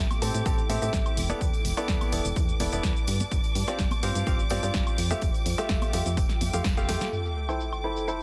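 Piano house with a soulful, bittersweet mood, this excerpt sets a clear, worn grand piano riff, treated with tape echo and a low-pass filter, over a round FM bass, rich bowed string chords, an ethereal, chorused pad, a punchy analog drum machine, a dry electronic kick up front and background congas and tambourine, with sidechain pumping on the piano, bass, strings and pad before a drum fill at 6.9 seconds gives way at 7.1 seconds to a sub drop and filter sweeps on the drums and piano.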